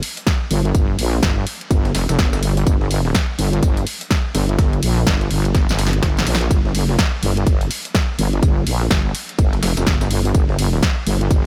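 Set in a digital ambience, this short cut from a longer bass house track struts along at 125 BPM in G minor, with a 60% swing on the sixteenths giving it a swaggering, bouncy feel. A punchy electronic kick sits up front from 0.3 seconds, layered with a house drum kit whose hi-hat and punchy snare carry the groove. Beneath them, a very quiet, gritty sampler-style breakbeat kit adds compressed hi-hat, tambourine and a high-tuned snare. From 0.5 seconds a heavy, dark wobble bass enters, a detuned sawtooth and sine unison with a resonant, fast-attack edge, held between F1 and Bb1, sustained and compressed with chorus and sidechain pumping. A drum fill breaks the pattern at 5.5 seconds before the groove rolls on to the end of the excerpt.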